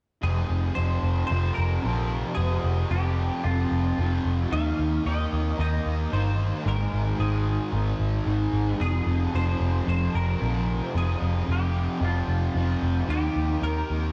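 A double-tracked fuzz guitar sits up front with a warm, distorted riff and a subtle chorus, while a dark, round, foam-muted bass plays beneath it, giving this brooding, melancholic rock fragment its weight. Above them, a bright, clean, compressed semi-hollow guitar carries the melody through an ensemble chorus and delay, over a progression moving between F minor, E-flat and A-flat suspended chords. All three parts play together from 0.2 to 14.1 seconds, held in a dreamy mix soaked in the lingering wash of a cathedral reverb.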